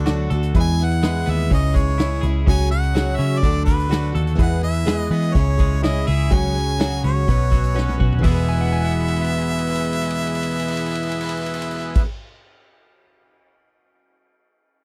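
A clear harmonica carries the melody in this hopeful, open-road stretch of folk rock and heartland rock, its close-miked, pop-style lead marked by light vibrato and scooped notes. Beneath it, a round, foam-muted vintage electric bass sits up front, and a natural country drum kit with a punchy kick and medium-tuned snare drives a straight 4/4 feel, with fills arriving around 7.8 seconds and again from 8.5 seconds. A compressed, twangy twelve-string electric guitar plays a riff, while a boxy, swing-style acoustic guitar picks along in the background. A brilliant, woody upright piano opens with a short fill and stays very quiet, and a reedy accordion holds sweet, airy sustained chords with light tremolo tuning. From 8.5 seconds a clean lap steel joins in the background with slide and volume swells, all captured in a dry, close 1970s-style studio sound.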